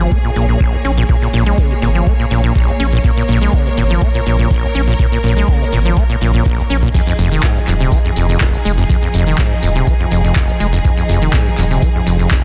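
A squelchy, resonant sawtooth acid bass riff sits up front with a filter sweep, digital delay and sidechain pumping, over a thick, tube-saturated sine sub bass, an overdriven deep analog kick and a drum machine of metallic hats, handclaps, tambourine and crash, while a distant, lush bowed string section sustains Bbm7 and then Fm7 chords from 6.9 seconds in this trippy, raw acid house excerpt with a dry, dense, heavily limited sound.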